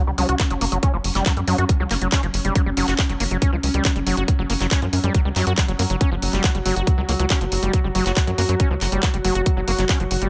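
Alien and psychedelic, this brief psychedelic trance excerpt at 139 BPM pairs a tight, punchy sequencer bass with ring-modulated sawtooth bite and a squelchy, resonant overdriven acid bass riff under a filter sweep and digital delay, while a pulsing gated triangle texture holds sustained F#5 chords with chorus, built-in reverb and vintage 12-bit sampler grit, both upper synths pumping to the sidechain, as a garage kit of handclaps and warm hi-hats enters at 0.2 seconds and an up-front electronic kick joins at 0.4 seconds in a dry, close mix.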